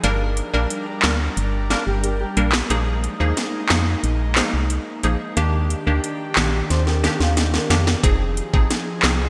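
Bouncy and tough, this dancehall excerpt moves at 90 BPM in a straight 4/4, with a bright 1980s-style digital sheen and a lush hall reverb around chords running from Gm through Bb7sus4 and Ebmaj7 to Fm7. An up-front electronic drum kit with gated reverb, a knocking kick, sharp snare, metallic hats and handclaps sits over a woody, round FM bass, while a crisp, detuned wavetable stab with phaser carries the accompaniment and an airy, breathy pad with chorus and sidechain pumping sustains chords in the background. A dark, thumb-plucked flamenco guitar with lush chorus slips in with arpeggios at 1.7 s and returns at 6.7 s alongside a drum fill that runs to 8.0 s.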